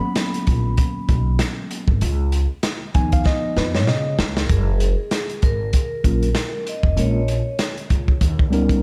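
A crunchy, saturated breakbeat kit sits up front in this smooth, warm jazz-hop excerpt at 97 BPM in F# major, its tight kick, medium-tuned snare and hi-hat swung on the sixteenths with a gritty, rolled-off top and a drum fill at 3.3 seconds. A woody, growly pizzicato upright bass anchors the groove while a clean tine electric piano carries rootless G#m11 and C#9 chords into F#maj7. From 4.4 to 7.6 seconds a ringing, hard-mallet vibraphone adds a melody with slow motor vibrato and tape echo, set in light reverb and small-room ambience.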